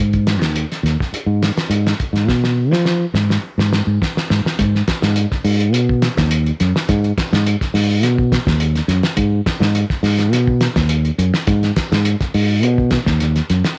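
A round, up-front fingered electric bass opens this funky, intense afrobeat excerpt at 104 BPM in G# dorian, joined almost at once by a cloth-damped, thuddy acoustic drum kit of kick, snare and hi-hat. The lo-fi drums sound muffled and gritty, saturated in a small room with a fat snare, tight kick and rolled-off top, and a drum fill runs from 2.3 to 4.6 seconds before the second section settles in. The sound is dry, with a faint mains hum beneath it.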